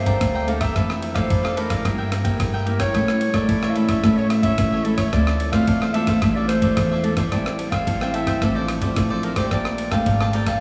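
A straight four-beat samba and choro groove is driven by a compressed, sampler-style breakbeat kit with a gritty, thumpy kick, ride cymbal and rim click, under a woody pizzicato upright bass. A fingerpicked, full-bodied nylon-string guitar and a crisp, picked cavaquinho fill in the minor-key harmony, while a distant, classical-style solo clarinet carries the melody. The festive, playful mood is set in a vast, echoing cathedral reverb in this short section cut from a longer piece.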